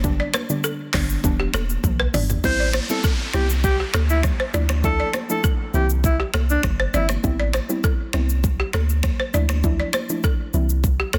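Sultry and smooth, this afrobeats cut rides a deep house drum kit with a soft-clipped snare over a punchy sub bass, a dark chorused pluck and background congas, while a woody, buzzing balafon riff with delay runs throughout and a breathy alto saxophone carries the melody from 2.5 to 7.1 seconds above an electronic downlifter, in a dry, dense, heavily limited master.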